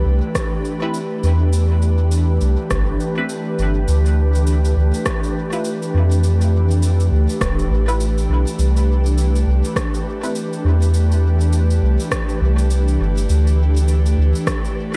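A round, up-front sub bass anchors this hazy, spacious ambient dub excerpt at 102 BPM, swung on the sixteenths, under an airy, breathy pad with chorus that sustains Cmaj7, Dm69 and Dsus2 chords throughout. A punchy layered electronic kick and a rim click and shaker, re-recorded in a large room and sent through dub echo, enter at 0.4 seconds. A muted, filtered chord stab with phaser and dub echo flickers from 0.8 to 10.4 seconds and returns briefly at the very end, all over a dry mix coated in vinyl crackle.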